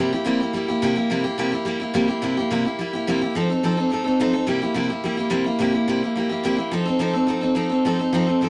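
A light reverb surrounds a bright, full-bodied dreadnought acoustic guitar placed up front, its fresh strings ringing and a touch of finger squeak audible. This rowdy, upbeat rock fragment moves at a brisk 214 BPM in straight 4/4, in C mixolydian and tuned to A4 = 438 Hz. The picked guitar plays alone across all 8.5 seconds, ranging from C3 to A4 and shifting between C7 and F7.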